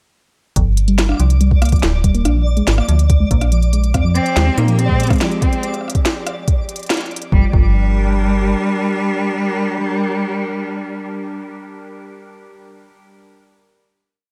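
A metallic FM bass sits up front with long gliding notes in this eerie, cerebral IDM piece at 142 BPM in G phrygian, over an overdriven electronic kick with a broken pattern and a glitchy kit of clicky hats, rim and tiny snare playing an ever-changing beat. A soft, harp-like synth pluck runs a dark 11-step arpeggio that drifts against the bar under a filter sweep, while a twinkling granular texture holds a high, sparkling note and an icy, crystalline pad brings slowly shifting chords. From 4.2 seconds an expressive, distant cello adds a free bowed melody with vibrato and portamento, and after a band accent at 6.9 seconds the groove gives way at 7.3 seconds to a final Gm chord carried by the pad and cello, with the bass lingering briefly beneath them.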